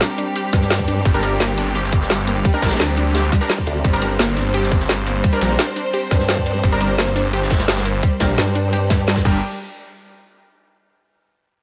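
A snarling, growling distorted saw bass enters at 1.1 s to drive this tense, mechanical dark technical drum and bass drop in G minor at 172 BPM, with a formant-sweep wobble bass bursting in from 0.5 s, a tight electronic kick, a layered kit with woody snare and metallic hats, a very quiet gritty breakbeat kit, lush bowed strings holding sustained chords, pumping unison pluck arpeggios with dub echo, and bold orchestra-hit-like stabs, all in a small room, with a band accent at 9.1 s before the passage breaks off at 9.4 s.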